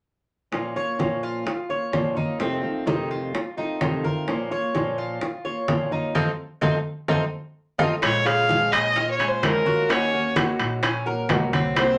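Warm and sultry, this excerpt of Cuban son and guajira moves at 128 BPM in Bb minor, opening with an up-front, fingerpicked nylon-string guitar, round low-tuned bongos and thick-skinned congas played with soft hands, joined at 0.8 seconds by the bright, metallic double strings of a picked tres in arpeggios. A band accent and a drum fill lead into the second section at 8.0 seconds, where an expressive bowed violin takes the melody with vibrato and portamento, a woody, growly pizzicato upright bass and ringing metal-shell timbales join, and the chords shift to Bbm7 and Ebm7. The whole sits in a wet studio ambience.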